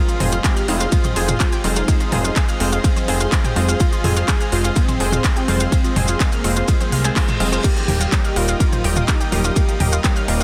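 A punchy, up-front electronic kick anchors this expansive, dreamy progressive house excerpt at 125 BPM in F minor, alongside a fat, sidechain-pumped analog bass with a moving notch, crisp hats, handclaps and cymbals from the house kit, grainy maracas, overdriven electronic toms and congas, nasal wave-folded analog pluck arpeggios with chorus and tape echo, lush unison pluck stabs, a full-bodied supersaw pad, a bold detuned unison lead with vibrato and delay, and a very quiet glassy texture of drifting overtones, while a reverse cymbal at 6.9 s leads into the move from Fm to Eb at 7.6 s, all set in light reverb within a dense, heavily limited modern master.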